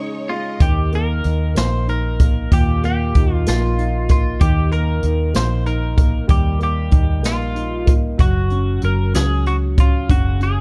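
Tender and heartfelt, this slow six-eight pop ballad at 63 BPM, cut from a longer piece, opens with a brief break where a lush violin section and distant bowed strings sound over a Dbsus2 chord with deep-toned grand piano, before a bright, twangy twelve-string electric guitar with subtle chorus carries the melody from 0.3 seconds and a round, foam-muted vintage bass and up-front brushed jazz kit with a boomy kick join at 0.6 seconds, moving through Ebadd9 to Gbsus2 in a small, natural room.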